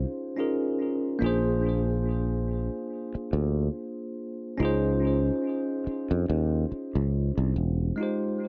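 Smooth and late-night, this brief neo-soul R&B fragment moves with a lightly swung sixteenth-note feel through Dbmaj7, Bb9 and back to Dbmaj7 before landing on Fm9. A bright, bell-like tine electric piano, heard as if through built-in speakers and treated with tape echo, carries the chords up front, while a growly, direct fretless electric bass sustains beneath it until 7.9 seconds. Light reverb and a digital ambience give the echo-heavy mix its hazy nighttime glow.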